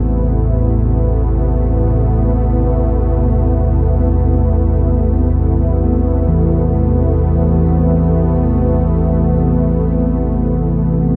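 A deep, rumbling, detuned drone sits up front in this vast, ominous dark ambient fragment in free time, beneath an airy, evolving pad of sustained Amadd9 chords with a chorused noise layer, while a bronze singing bowl rings metallic arpeggios with slow beating through a diffuse delay, all soaked in a huge, dreamy reverb.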